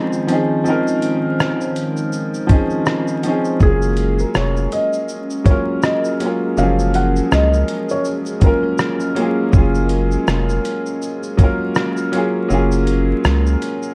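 A clear, woody upright piano with cassette-toned, filtered accompaniment and a hollow, flute-like pad with chorus open this nostalgic, mellow lo-fi hip hop excerpt at 81 BPM in Gb lydian, joined at once by a gritty, compressed sampler-style kit with a thumpy kick, rim click, hi-hat and shaker, before a round analog bass and a soft, felt-muted upright piano melody with audible action noise and tape echo enter at 3.6 seconds, the melody stopping at 8.6 seconds, all in a dark production dusted with vinyl crackle as the harmony moves from Dbmaj9 to Gbmaj9.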